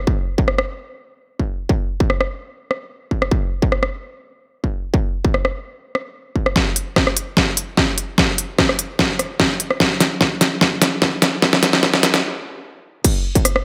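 Aggressive and menacing, this dubstep fragment cut from a longer piece runs at 148 BPM in 4/4 with a half-time feel. A distorted electronic kick drum starts at 0.1 seconds, layered and up front with a tape-warm tone in a small room ambience. The dubstep drum kit joins at 0.5 seconds, bringing a deep snare, crisp hi-hats, rim clicks and crash cymbals, equally layered and forward in the mix. From 6.6 seconds the track shifts into a build-up driven by a drum fill that runs until 12.2 seconds, when a sudden stop cuts the momentum through 13.0 seconds. The whole production sits in a moderate, lush digital hall reverb with a high-pass filter that thins the low end.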